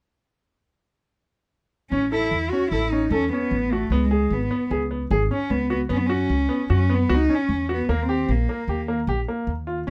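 Restless and playful, this short excerpt from a longer contemporary instrumental piece moves at 151 BPM in an uneven 5/4 metre with a straight feel, centred in A lydian. At 1.9 seconds a bowed cello, a baby grand piano and an upright bass all enter together and sit up front in a close, nearly dry room. The cello carries the melody with a soft attack, light vibrato and an intimate sul tasto tone, sounding like a single player close to the listener. Alongside it the piano plays brilliant, natural-sounding arpeggios, while the pizzicato upright bass gives a woody, thumpy foundation from its gut strings. The harmony steps through A, C#5, F#sus4 and D#, and the cello drops out at 8.9 seconds, leaving piano and bass to close the passage at 9.9 seconds.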